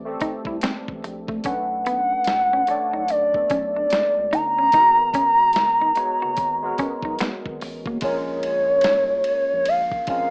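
Smooth, soulful neo-soul R&B at 73 BPM with a swung 16th feel, where a barky, lightly overdriven tine electric piano with analog chorus and a deep, round analog bass in the background lay down Am9, Bm9, Abm9 and Bbm9 chords, a dusty, gritty sampler-style drum kit with thumpy kick, hi-hat, snare and ride sets the groove from 0.2 s, a clean hollow-body electric guitar with tremolo adds a second line until 8.0 s, and a mellow gliding portamento lead with vibrato, chorus and slapback echo sits up front from 1.5 s, all heard through a rough home-demo mix with a small-speaker sound and moderate reverb in this short excerpt.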